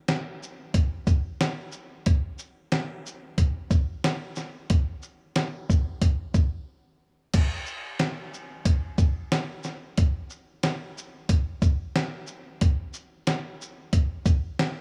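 A swung sixteenth-note hip hop groove at 91 BPM in 4/4 drives this dark, gritty fragment of a longer piece, carried by a dusty, sampler-style soul drum kit of kick, snare, hi-hat, shaker and crash cymbal that sits up front. The thumpy kick and fat snare come through compressed and tape-warm, set in a small room with light reverb. A brief break from 6.7 to 7.3 seconds leads into the second section, which runs to 14.8 seconds.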